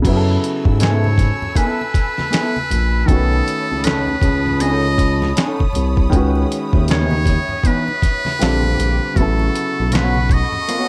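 A dark, dry production frames this soulful, late-night neo-soul and R&B passage, cut from a longer piece and swinging at 79 BPM in F# dorian over chords moving from F#m11 through B9 and C#m9. Up front, a gritty, tape-warm sampler-style drum kit with thumpy kick, snare, hi-hat, handclaps and crash sits beside a smooth, gliding synth bass with portamento, while a grand piano with short sustain accompanies and very quiet, saturated congas add texture. From 0.8 s a buzzy, metal-muted trumpet with slapback echo carries the melody over a clean, fingered electric guitar second line with subtle chorus, as a lush, bowed string section sustains chords beneath.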